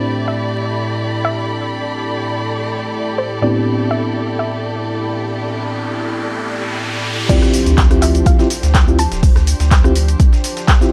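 A light reverb and a bed of vinyl crackle frame this late-night, smooth deep house excerpt at 124 BPM in D dorian, where a soft round pluck carries the melody over a sawtooth-edged analog pad, mellow FM electric piano stabs and a bowed string section with vibrato and portamento, all moving on an Am11 chord. An electronic riser builds from 5.1 seconds into the drop at 7.3 seconds, when the harmony shifts to Dm11 and an impact lands alongside a nasal, round analog bass, an overdriven kick that sits up front, a house kit with bright hats, claps, rim click, shaker and crash, and a gritty, pitched-up breakbeat kit tucked in the background. The pad, electric piano, strings, bass and breakbeat hats all pump against the sidechain, and the 16ths carry a gentle swing.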